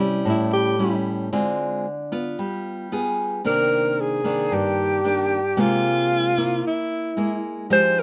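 Bossa nova at 113 BPM with a smooth, melancholic mood, cut from a longer piece, where a fingerpicked classical nylon-string guitar with a full-bodied tone and audible finger squeaks sets the harmony while a close-miked, breathy alto saxophone enters at 0.3 seconds with a jazz-style solo of airy subtone and vibrato, both parts up front in a moderate studio reverb as the chords move from A7 through Dm7b5 and G7b9 to Cm9 and C7b13.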